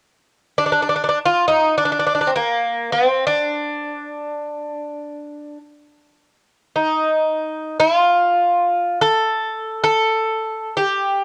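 Melancholic and reflective, this short excerpt of Greek folk music unfolds in free time in D phrygian, tuned to A4 = 442 Hz. A lone bouzouki enters at 0.6 seconds and carries the melody between Bb3 and A4, its picked double strings sounding metallic with some octave-doubled courses, placed up front with a cassette-tape character. The home recording on cassette sits in a small room with light reverb, and the piece is cut from a longer performance, ending at 11.2 seconds.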